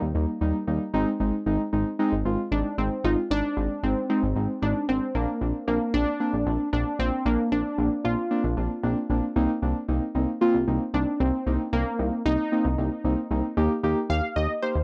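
A straight 4/4 pulse at 114 BPM drives this nostalgic, upbeat synth-pop excerpt in Eb major, moving from Eb through Ab, Bbadd9 and Cm7 before returning to Eb at 13.6 seconds. A punchy, warbling polysynth built from detuned sawtooths carries the funky melody with chorus and analog delay, over soft, muted felt-like keys with a noise layer and a glossy, retro pulse-wave bass with a filter pluck, all three sitting up front. The sound is dry and gritty, colored by transformer saturation from hardware gear.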